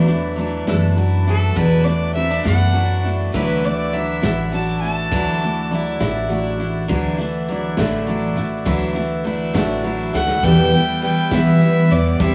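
A lilting 6/8 sway carries this melancholic, haunting fragment of acoustic folk: an up-front jumbo steel-string guitar picks the accompaniment while a parlour guitar with fresh strings plays arpeggios, a reedy, nasal harmonium breathes dark sustained chords, a woody, thumpy pizzicato upright bass holds the low end, and a natural country drum kit with a punchy kick and medium-tuned snare sits beneath, as a clear, earthy bowed fiddle with light vibrato carries the melody from 1.3 s and returns at 10.1 s, with the guitars, harmonium, drums and fiddle all carrying a cassette-tape character in a small, lightly reverberant room.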